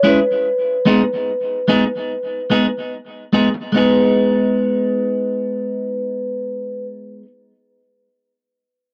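A laid-back, hypnotic reggae fragment, cut from a longer piece, where a clean, twangy electric guitar sits up front with picked accompaniment, its tone colored by a warbly pitch drift and tape echo. A soft-mallet vibraphone, played with the motor off, carries the melody on a mellow, ringing B4 through tape echo until 6.8 seconds, while the guitar continues to 7.3 seconds. The sound is dry and close, in the manner of a 1970s studio, with a modest booth ambience.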